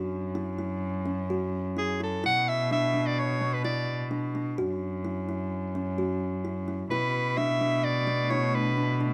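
Moving in a straight 5/4 at 128 BPM in B minor, this hypnotic, pensive fragment of contemporary chamber music sets a woody, fingertip-plucked kalimba's arpeggios over an earthy, biting bowed cello bass, with a breathy, jazz-inflected soprano saxophone carrying the melody up front from 1.8 seconds, and an ethereal, detuned pad with its own built-in reverb and tremolo fading in very quietly at 8.3 seconds, all captured closely and dry.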